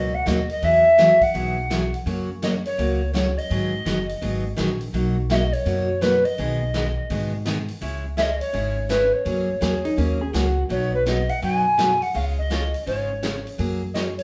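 A down-home, playful slice of western swing country, cut from a longer piece, moving at a brisk 167 BPM in B major with a swung eighth-note feel. A mellow, hollow alto recorder carries the melody up front with a pure, straight tone and soft attack. Beneath it, a bright, full-bodied picked acoustic guitar picks through changes like Bmaj7, Eadd9 and G#m7, while a woody, thumpy pizzicato upright bass anchors the low end. A swinging big-band drum kit joins at 0.3 seconds, its punchy kick, medium-tuned snare and hi-hat sitting well back in the mix. Briefly, from 9.6 to 10.6 seconds, a dark, clean lap steel guitar adds a second line with slide and volume swells. The band sounds like it is playing live together in one room, bathed in a wet large-studio reverb.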